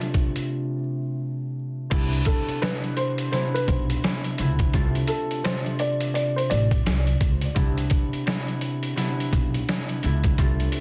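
A swung boom-bap groove at 85 BPM in 4/4 anchors this nostalgic, soulful hip-hop excerpt in C major. Its sampler-style kit is compressed, pitched down and gritty, with a thumpy kick, a medium-tuned snare, hi-hat and crash cymbal, all sitting up front with a tape-warm, big-room character. A fingerpicked concert harp rings out from the start over F6/C and Cmaj9 chords, its acoustic tone filtered and given a cassette-tape patina, while a grainy tube shaker stays mellow in the background. After a break from 0.5 to 1.9 seconds, a pizzicato upright bass arrives with a growly, steel-string bite. A dark, mellow upright piano then carries a brief melody from 2.3 to 6.8 seconds, its woody, short-sustain notes filtered and trailed by digital delay. The mix is dry, dense and heavily limited, with a layer of vinyl crackle.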